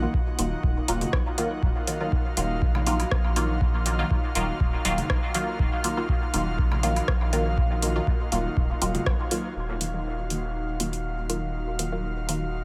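A steady, straight 4/4 pulse at 121 BPM drives this hazy, cavernous dub techno clip in Eb minor, cut from a longer piece and resting on an Ebmadd9 chord. A deep, tape-warm electronic kick thumps from 0.1 s until 9.2 s, while a booming analog drum machine adds metallic hi-hats and a rim click from 0.4 s. Very quiet layered congas and woodblock, re-recorded in a small room, join at 1.0 s. Up front, a muted, detuned sawtooth chord stab with a filter pluck, fast attack and short decay carries chorus, phaser and dub echo, pumping under sidechain alongside a round, soft sub bass low in the register. Above them, an airy, breathy pad with a noise layer and slow attack holds bright, chorused chords, also pumping under sidechain. A band accent lands at 9.1 s before the kick and congas fall away, leaving pad, stab, bass and drum machine in light reverb for the closing seconds.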